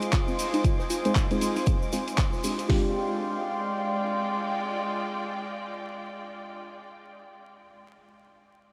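Swung 16th-note hi-hats, a deep kick and a fat snare drive this late-night deep house excerpt at 117 BPM in F dorian, with handclaps from a second tape-warm electronic kit, a grainy egg shaker and a very quiet, dark acoustic jazz kit all dropping out at 2.7 seconds. A smooth, warbling analog pad and soft, mellow chord stabs with delay pump against the kick, moving from Ab/F to Fm69. A round, gentle pluck arpeggio under a filter sweep stops by 2.9 seconds, while distant, clear studio strings and a barely audible lush violin section float in a huge, dreamy reverb dusted with vinyl crackle.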